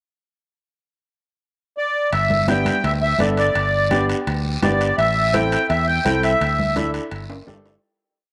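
A straight 4/4 cumbia groove at 168 BPM in G major drives this short, festive dance piece, where a sweet, reedy accordion with light tremolo tuning opens on hook phrases at 1.8 s before a punchy fingered electric bass, bright congas and ringing metal-shelled timbales in the background, a raspy guiro and a woody upright piano playing rhythmic triad chords join in, with a wet spring reverb in the mix, until a fade-out from 6.4 s and a closing drum fill at 7.3 s.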